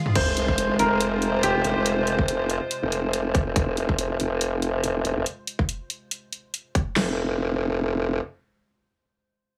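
Aggressive and chaotic, this heavy wobble dubstep excerpt opens on an impact at 0.2 seconds, where a saturated formant-sweep wobble bass with chorus and overdrive sits up front on a half-time, swung groove over a single minor chord. A punchy, overdriven big-room drum kit with a huge snare is layered with a small-room dubstep kit of crash, hi-hat and toms, while a very quiet sub drop rumbles beneath. A clear baby grand piano with tape echo adds a brief melody, a bright, warbling wavetable pad pumps with sidechain until 3.5 seconds, and from 7.0 seconds the bass carries on past the final drum hits.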